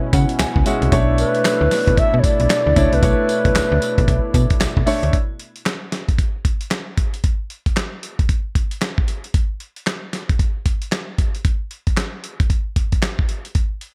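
A breathy, dark clarinet carries the melody with vibrato and scooped notes in an intimate, close-miked jazz style. Alongside it play a clear concert grand piano that opens with a short fill, a smooth detuned analog pad with chorus, and a snappy, metallic FM bass over C#m7 and Bm11 chords in B dorian. By about 5.2 seconds the other parts have stopped, and the gritty, compressed sampler-style drum kit, with its thumpy kick, handclaps, tambourine and gated reverb, carries this bouncy, punchy new jack swing groove at 114 BPM alone until 13.9 seconds.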